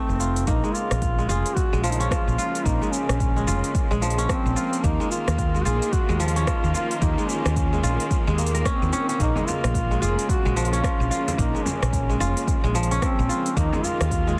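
A distant, roomy duduk carries the melody of this earthy, meditative organic downtempo piece, its folk-style line full of vibrato and scooped notes and trailed by tape echo. Set at 110 BPM in 4/4 with a 16th-note swing and in Bb minor, this fragment of a longer piece opens on a band accent before the harmony moves between Bbm7 and Ebsus2. A crisp, ringing, fingerpicked kora plays arpeggios through its own tape echo, while a round, hollow-body fretless electric bass with analog chorus sits prominently underneath. Overdriven electronic drums supply smooth hi-hats, rim clicks and shaker alongside a deep kick, and a lush, bowed symphonic string section holds sustained chords in the background with sidechain pumping. At 9.4 seconds a large acoustic frame drum joins, played with soft hands, and the mix sits in light reverb and small room ambience under a dense, heavily limited modern master.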